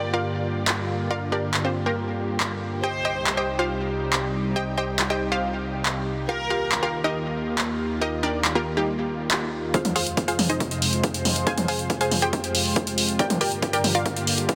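A bright, detuned sawtooth pluck carries the melody over a thick, warbling pad with chorus, both pumping to the sidechain as this driving, emotional uplifting trance excerpt in F dorian moves at 139 BPM through chords from Gm7 via Cm, Ebadd9 and Fm back to Gm7, with a punchy analog drum machine of handclaps, hi-hat and toms entering at 0.7 s, a distant, smooth violin section adding brief delayed touches in the background, and an up-front electronic kick arriving at 9.7 s for the build-up, all set in a huge ambient reverb and a dense, heavily limited master.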